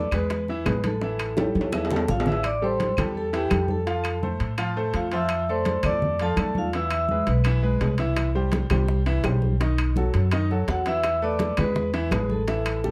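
A driving salsa groove in straight 4/4 propels this passionate excerpt from a longer piece, with congas, timbales and claves running under nearly the whole passage and a drum fill between 1.4 and 2.4 seconds. Up front, a thumpy, gut-strung upright bass is plucked low, while a bright upright piano with audible action noise and long sustain carries the accompaniment with an intimate, polished presence. A vibraphone played with medium hard mallets and its motor off takes the melody in a boxy small room, dropping out at 8.0 seconds and returning at 10.7. The bongos sit low-tuned, round and dry in the background, pausing after the opening and coming back at 8.2 seconds, while the timbales ring from their metal shells and the claves click woodily behind. The harmony moves through chords such as Am7, F, Dmadd9/F, C and B7 before settling on E, all within a dark, moderately ambient studio production.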